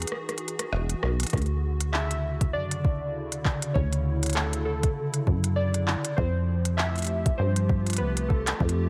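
IDM at 99 BPM in 4/4 with a light swing on the sixteenths, this short excerpt from a longer piece feels wistful and playful. It opens with a break, as the organic electronic drum kit plays a fill of handclaps, crisp hi-hat and rim click over a hollow, flute-like pad and a rubbery, saturated acid bass with a resonant filter pluck. The soft electronic kick arrives at 1.3 s as the chords move from Emaj9 to Dmaj9. At 1.9 s, warbling lo-fi synth keys enter with a nostalgic melody, colored by chorus, tape echo and ring modulation. The harmony shifts to Fmaj9 at 6.2 s, while the mellow pad sustains detuned chords under an ensemble chorus. The drums sit up front with a small-room character, the bass is also up front, and a light reverb surrounds the mix.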